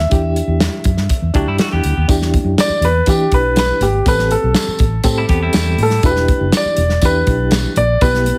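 Urgent and passionate, this snippet of uptempo 1960s-style soul sets an intimate grand piano melody, its action noise audible and soloing from 2.1 s, over a dark, round muted electric bass, a punchy, polished drum kit and a reedy, lightly overdriven electric piano with fast tremolo, while a twangy clean electric guitar riff surfaces briefly at 1.4 s and 5.2 s, bright high-tuned congas and a distant, jingly tambourine join at 2.1 s, and the small-room mix is squeezed into a heavily compressed radio sound.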